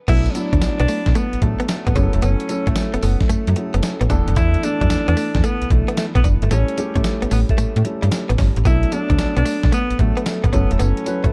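A vibrato-rich alto saxophone with subtone and scooped notes carries the jazz-style melody through a touch of delay in this confident, slick new jack swing excerpt, riding over a snappy, metallic FM slap bass, a gritty sampler-style drum kit with thumpy kick, fat snare, hi-hat, crash and tambourine, a dark, mellow grand piano with audible action noise, and a clean, direct-recorded electric guitar riff with analog chorus sitting in the background, within a dry, dark production.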